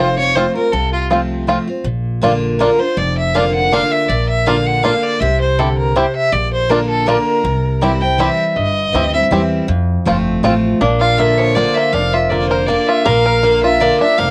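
Recorded at home on cassette in a small, damp-sounding booth, this rustic, lively bluegrass excerpt swings along at 161 BPM in 3/4 on chords of F, Bb and C. A clear, focused bowed fiddle carries the melody up front over a bright picked steel-string acoustic guitar, a twangy, percussive banjo playing arpeggios with fingerpicks, and a woody, thumpy pizzicato upright bass. Meanwhile, a metallic, nasal lap resonator guitar slides in the background at the start and returns at 10.8 seconds as the fiddle takes its solo to the end at 14.3 seconds.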